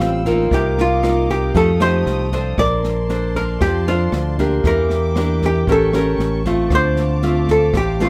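A dark, clean archtop guitar carries the melody up front in this sunny, romantic bossa nova excerpt at 116 BPM, its picked hollow-body tone sitting beside a bright, fingerpicked nylon-string guitar that supplies the accompaniment. A round, direct fingered electric bass anchors the low end, while an open jazz drum kit with a boomy kick, rim click and medium-tuned snare plays in a small room. Behind them, a chamber string section holds soft-attack sustained chords with light vibrato and a sul tasto intimacy, all over a harmony moving from Dm11 through Bbmaj9 and A7b9 to Dm7 in light reverb.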